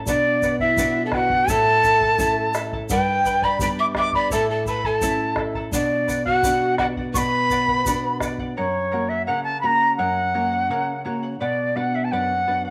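A straight 2/4 pulse at 85 BPM carries this melancholic, earthy Andean folk passage in B minor, cut from a longer piece. A bright, reedy large quena sings the melody up front, its wooden tone airy with vibrato and a soft attack. A breathy bamboo pan flute adds a mellow, tongued second line with audible chiff until about 8.2 seconds. Underneath, a fingerpicked charango shimmers on its double strings, some doubled at the octave, while a dark, thumb-plucked nylon-string guitar supplies classical-style accompaniment. A deep, band-limited bombo with a vintage character and a grainy, distant egg shaker keep time through the opening stretch, dropping out between 8.4 and 8.6 seconds as the harmony moves to F# before settling back on B minor. The ensemble sits in studio ambience bathed in a wet echo chamber reverb.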